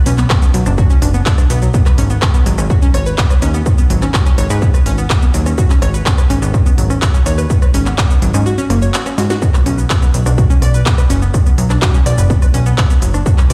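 Melodic techno with a hypnotic, driving pulse, anchored by a heavy, tape-warm electronic kick and a punchy, funky sawtooth-and-square plucky analog bass, both up front, with the bass pumping under sidechain. A round, detuned analog pluck spins bright, chorused and delayed arpeggios with a filter sweep and noise layer, while a layered techno drum kit adds a cracking snare, smooth hats, handclaps, rim click and shaker, its hats and percussion also pumping. The kick drops out from 8.5 to 9.4 seconds, with a drum fill at 9.2 seconds, and the mix carries the feel of a big sound system in a bare room.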